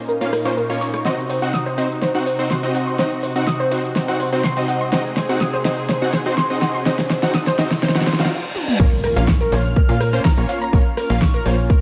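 Dreamy and emotional, this progressive house passage at 124 BPM in Bb minor opens with a build-up in which a smooth, detuned analog pad holds sustained chords with chorus and tremolo, a soft, round pluck spins dark arpeggios under a filter sweep with lush chorus and delay, punchy supersaw stabs carry a tape-like tint, and an overdriven deep house kit with a fat snare and metallic hats plays a long fill. Very quiet electronic risers, a reverse cymbal and an impact mark the transition, and after a brief stop at 8.3 seconds the drop lands at 8.8 seconds with a punchy, up-front kick and a tight, nasal sequencer bass. A reversed, granular swelling texture then floats in the background, and the whole mix sits in a lush hall reverb with the pad, pluck, stabs, bass and texture all pumping under sidechain compression.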